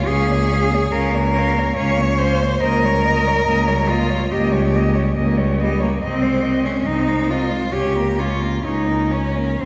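A lyrical classical passage for a cello ensemble opens at once, three bowed cellos playing together, with the bass cello joining a moment later at 0.1 seconds. Each line is taken by a single player with vibrato, and the ensemble's tone is rich and warm in a loose, rubato 4/4. The highest cello carries the melody with a soft attack, expressive phrasing and gliding portamento. Beneath it, a smooth, even second line and a low bass part sit close and up front, while a focused accompanying cello stays in the background. The whole group is heard from further back in a reverberant scoring stage, giving this brief, warm excerpt, cut from a longer piece, a lingering glow until it ends at 9.7 seconds.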